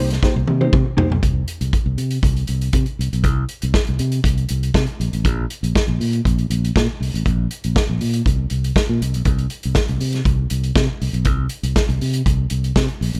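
Driving and glamorous, this disco excerpt moves at 120 BPM in a straight 4/4, opening on a Cm7 chord. A clear baby grand piano, very quiet with a short sustain, touches a single high melody note while a mellow electric guitar, dark, clean and compressed with a phaser, adds fingered accompaniment, and both fall away by 1.2 seconds. The vintage drum kit sounds acoustic and up front, with a punchy kick, a medium-tuned snare and a rolled-off top, and it opens with a fill across hi-hat, kick, snare and toms leading up to that point. From there the fingered electric bass, bright, growly and direct and present since the very start, carries the groove alone with the drums through a chordless stretch until a Bbsus2 arrives at 5.0 seconds. The overall sound is dry and close, with little reverb.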